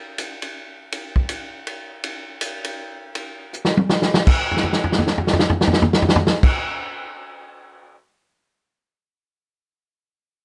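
Jazz in a lilting 3/4 swing, this short excerpt cut from a longer piece carries a searching, intense mood. The only part is a vintage acoustic drum kit, heard up front in a small, natural-sounding room with light reverb, entering at 0.2 seconds. Its voice comes through crash, ride and hi-hat, kick, snare and toms, with dark cymbals, a medium-tuned snare and a tight kick, all given a rolled-off top. A drum fill arrives at 3.5 seconds, bridging into a second section, where another fill runs from 4.4 seconds nearly to its close. The kit plays on until 8.0 seconds.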